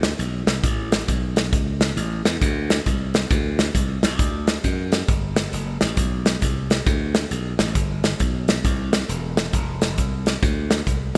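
Uptempo gospel with a soulful, jubilant mood, this short cut from a longer piece moves at 135 BPM in 4/4 with a swung eighth-note feel in G major. A natural acoustic country drum kit of hi-hat, snare and kick sits up front, its airy, polished studio-room sound carrying a medium-tuned snare and a punchy kick. An electric slap bass, glassy and growly, plays in a low register with a bright, direct attack that also sits close to the listener. Both parts play together from the start until the passage ends at about 11 seconds. A moderate, lush hall reverb and a bright 1980s-style digital production give the recording its sheen.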